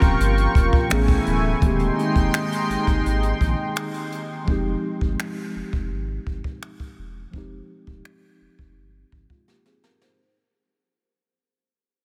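A dreamy mix, soaked in a huge ambient reverb, gives this short, fading contemporary R&B clip a moody, late-night atmosphere in a straight four. A mellow tine electric piano carries the accompaniment throughout, its clean tone heard as if through built-in speakers. A bright, shimmering pulse-width pad sits up front with retro, detuned, chorused sustained chords and a slow attack, then drops away at 4.4 seconds as the harmony settles from lush major-seventh colours onto Fm9. Underneath, a round, sine-like sub bass holds deep sustained notes until 9.3 seconds, while a jazz kit played with brushes adds finger snaps, hi-hat, a medium-tuned snare and a boomy kick from an acoustic studio room. The whole passage fades out, closing on a brief drum fill from 9.5 seconds.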